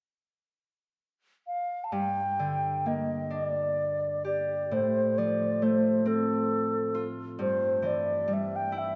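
A mellow baroque flute carries the melody of this Celtic folk slow air. It enters at 1.5 seconds with a pure, woody tone, vibrato and crisp attack, its highs rolled off, sitting up front between A4 and A5. Its mood is longing and haunting, set in G minor in 6/8 at a rubato pace of about 43-46 beats per minute in dotted quarters, with tuning at A4 = 443 Hz. A fingerpicked Celtic harp joins at 1.9 seconds, also up front, with a ringing acoustic sound ranging from G2 to G4. The harmony moves from Gm through F/A to Cadd9/G. A wet concert hall reverb with a 2.4-second decay surrounds the players, and this brief section is cut from a longer piece.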